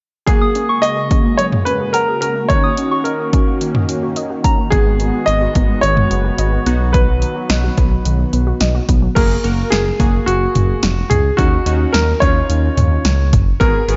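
Bright and nostalgic, this synth-pop excerpt moves at a steady, straight 4/4 pace. A present grand piano carries the melody up front, trailed by tape echo, while round, detuned analog keys with chorus fill in chords from the background. A lush, airy unison pad holds sustained harmony and a warbling, lo-fi pluck spins arpeggios until both drop away at 9.1 seconds, and a pure FM bell adds a gentle second line high above only through the opening seconds. A punchy, overdriven analog drum machine with gated reverb drives the piece with kick, snare, hi-hat, toms and crash, and a smooth sawtooth bass joins at 4.7 seconds to sit up front beside it. The mix has a light digital ambience and a soft, rolled-off top, and the chords cycle from F#add9 through D#m7, G#m7 and B before the sparer second section returns to F#add9 at 9.2 seconds.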